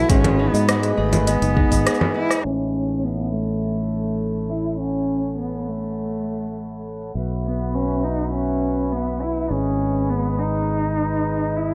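Folktronica with a pastoral, hopeful mood, this short excerpt runs in a straight 4/4 and is led by a dark, close cello that sings the melody up front with expressive vibrato and portamento, trailed by tape echo. Beneath it, a reedy, breathing pedal harmonium holds sustained chords through a low-pass filter, while a ringing Celtic harp plays fingerpicked arpeggios in the background until 7.4 seconds. A woody, hollow-sounding kalimba with a thumbnail pluck and vintage sampler grit adds a second line only at the opening, dropping out at 2.4 seconds. A growly, overdriven fingered electric bass sits up front, and an organic electronic kit of congas, crisp hi-hat, rim click and shaker drives the groove, joined briefly at the start by a deep electronic kick re-recorded in a large room. A drum fill and a band accent mark the move into the longer second section as the harmony shifts from G#m to Aadd9, then through Bsus4 back to G#m, all set in light reverb.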